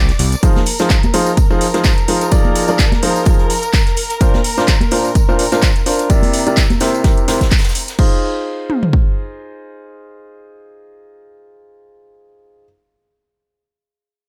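A 127 BPM 4/4 groove with a 56% sixteenth-note swing drives this soulful, bittersweet piano house piece in F dorian. Up front sits a punchy, tape-warm electronic house kit of kick and toms, layered with metallic hats, handclaps and crash, while an acoustic brush kit with a high-tuned snare, hi-hat and tambourine and a set of bright, close tambourine and congas sit in the background. A woody upright piano riff enters at 0.4 s, pumping with sidechain and shaded by low-pass filtering and delay, and it carries on past the rest of the band to 12.6 s; behind it, a dark, smooth chamber string section with vibrato holds sustained chords under a filter sweep until 8.0 s, as the harmony moves through Fm7, Bbadd9 and C7 back to Fm7 in a dry mix cut from a longer piece.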